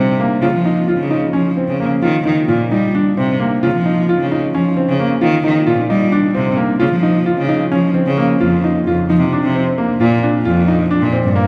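A vintage-toned concert grand piano rolls deep, mellow arpeggios over a clear, bowed cello bass line from a single player with vibrato, opening this pensive, hypnotic fragment of contemporary chamber music in 7/8 at 264 eighth-note beats per minute, where Db and Eb harmonies alternate until an F5 to Bb turn arrives at 8.4 seconds, both up-front instruments bathed in a long cathedral reverb.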